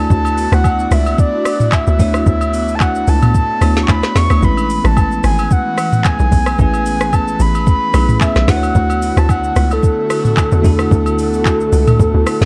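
A tight, punchy log drum bass sits up front in this soulful, relaxed amapiano excerpt at 111 BPM, joined by a smooth R&B kit with a soft kick, woody snare and metallic hats roughened by vintage 12-bit sampler grit, while agogo bells and woodblock sit in the background. A breathy, flute-like synth lead carries the melody with vibrato, chorus and digital delay over a bell-like tine electric piano and an airy pad treated with chorus, phaser and sidechain pumping. The chords move from Dmaj9 to Amaj9 at 4.4 seconds and back at 8.5 seconds, all in a dark production with light reverb.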